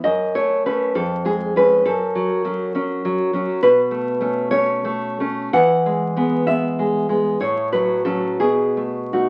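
A full-bodied nylon-string guitar, fingerpicked and up front, plays a tender, romantic solo classical piece in a rubato 6/8 at 53-70 BPM, moving from F#m through C#/E#, Bsus2 and E to a closing B7 in this 9.3-second excerpt, heard through moderate large-studio reverb and the crackle of a very old 78 rpm record.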